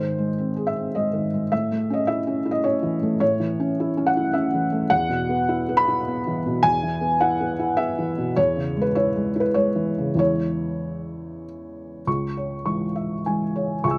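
Neoclassical minimalist piano in C# minor, wistful and intimate, moving in a rubato 3/4 at roughly 94-108 BPM in this short cut from a longer piece. A felt-muted upright piano plays solo across its range from C#2 to E6, its tone soft, dark and mellow with a thick-felt hush, placed up front in light reverb. The harmony drifts from G# through A and Esus2 to C#m/E before settling on C# minor at 12.1 s, where a new section begins and runs to the close at 14.0 s.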